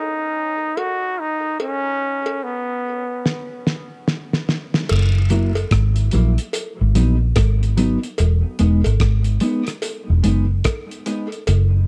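A dry, close 1970s-style studio sound in a small room frames this hypnotic, meditative dub reggae excerpt at 73 BPM with a swung 16th feel. It opens on a brilliant, softly vibratoed trombone melody through a low-pass filter and dub echo, while cowbell and jawbone-type rattle drift in with echo of their own, and a cloth-damped, thuddy drum kit with fat snare, tight kick and dark cymbals plays a fill into the groove. A round, foam-muted vintage fingered bass enters at 4.9 seconds under F#7, G#m7 and Emaj7, joined by a mellow, clean, compressed electric guitar with lush chorus and dub echo, as filter sweeps shape the opening break and closing bars.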